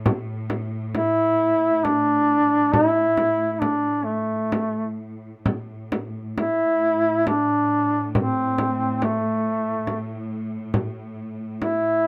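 A cello section opens the recording, holding a low drone on A2 from the very start. Its sound is rich and lush, bowed with vibrato and a smooth, focused top. A close, acoustic frame drum joins at 0.1 seconds and sits up front. From 1.0 seconds a duduk carries the melody between A3 and E4, singing with vibrato in a folk style and bathed in plate reverb that lends it a distant, roomy quality even as it leads the mix. This is a mournful, solemn Caucasian lament in A minor at 67 BPM in 3/4, its beats uneven and its pulse bending with rubato. The moderate studio reverb and rough home demo mix frame a 12.1-second cut taken from a longer piece.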